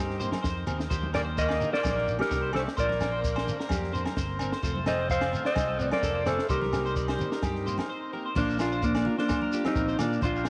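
This joyful, danceable highlife guitar band excerpt opens with a mellow, dark electric guitar carrying the melody up front, while a growling tenor saxophone adds a raspy, gritty second line with vibrato and scooped notes, touched by slapback echo, until it drops out at 7.9 seconds for a short break. Behind them a vintage, buzzy combo organ holds sustained chords through a lush chorus, and a slightly broken-up electric guitar picks compressed arpeggios with analog chorus and slapback echo. A punchy fingered electric bass anchors the low end, joined almost at once by a compact cocktail drum kit with a high-tuned snare, punchy kick and crash cymbal, its top rolled off. A woody, full-bodied steel-string acoustic guitar with old strings picks accompaniment in the background, alongside a grainy shekere, ringing agogo bells and damped, thick-skinned congas played with soft hands. The whole band sits in a small room with a moderate echo chamber reverb, moving through Cm7, Ebmaj7, Bbadd9 and F before settling on Bb as a new section begins at 8.4 seconds.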